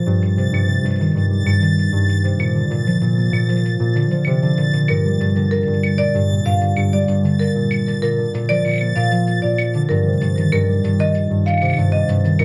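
Playful and pastoral, this short folktronica excerpt moves at 96 BPM in a straight 4/4, drifting through a gentle cycle of Eb6/G, Bb and Gmadd9 chords. Up front, a thumb-plucked concert harp rings out arpeggios in its low register, softened by a low-pass filter and trailed by digital delay. Behind it, a reversed, detuned texture with a granular, dreamy quality swells on a high sustained note, bathed in its own reverb. Shaker and claves sit in the background with a natural, small-room feel, their sound rounded off by low-pass filtering. At 4.9 seconds a woody marimba with padauk bars enters as a second line, its bright, airy mallet strikes echoed by digital delay. The production is dark and warm, set in a moderate studio reverb with a layer of vinyl crackle.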